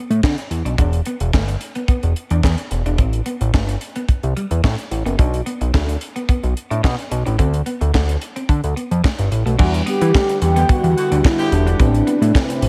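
A fat, thick analog bass with a filter sweep sits up front beside a dry, tight funk drum kit of kick, high-tuned snare, handclaps, hi-hat and bright crash cymbal in this funky, late-night early-eighties boogie funk excerpt, while a clean, picked electric guitar with subtle chorus plays the riff and, from 9.6 seconds, a round, horn-like synth lead with tape echo and vibrato carries the melody over a very quiet FM electric piano, joined by a silky string machine in the background at 10.0 seconds and a brief, clear horn section second line at 10.6 seconds.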